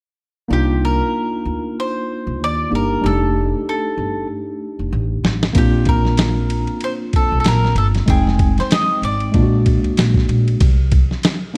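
A picked bowl-back mandolin carries the double-string melody in this mellow, nocturnal jazz-hop cut, a fragment of a longer piece in C minor at 95 BPM with a swung 16th feel, as a worn, slightly out-of-tune tine electric piano heard through its built-in speakers and a woody, pizzicato gut-string upright bass move through rich chords like Cm11 and F13 from 0.5 seconds, and a gritty, compressed, pitched-down, tape-warm boom bap sampler kit with a thumpy kick, a medium-tuned snare, hi-hat and ride enters up front with a drum fill at about 5.2 seconds, all within a dark, warm production with light reverb.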